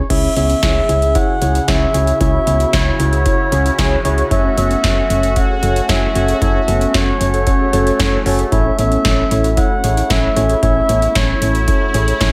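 A straight, driving 4/4 groove from an overdriven analog drum machine with a deep kick and punchy snare anchors this melancholic synth-pop excerpt, where a round FM bass, a worn, slightly out-of-tune tine electric piano under lush chorus that slips in a fill at 3.3 seconds, an airy, sweeping resonant pad, a very quiet, warbling lo-fi pluck playing arpeggios and a reedy accordion melody with analog delay move through C#m, F#m and A in a dreamy, reverb-soaked mix.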